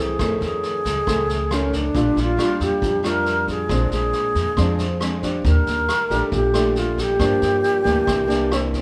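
A straight 4/4 bossa nova groove at 137 BPM carries this short, relaxed and sophisticated clip, cut from a longer piece and tuned to A4 = 442 Hz. The vintage brush drum kit joins at 0.2 s, its punchy kick, rim click and medium-tuned snare sitting mid-forward with a rolled-off top. The upright bass is plucked pizzicato, woody and warm, anchoring the low end, while the small, dark nylon-string guitar is fingerpicked through a chord sequence that moves from F7alt to Bb6, Bb9, Ebmaj7#11 and Gm7 before landing on C9 at 8.1 s. Up front, the alto flute carries the melody with a pure tone, a crisp attack and vibrato. The band plays live together in a large studio, and a moderate reverb of about 0.9 s gives the ensemble an elegant sense of space through to 8.8 s.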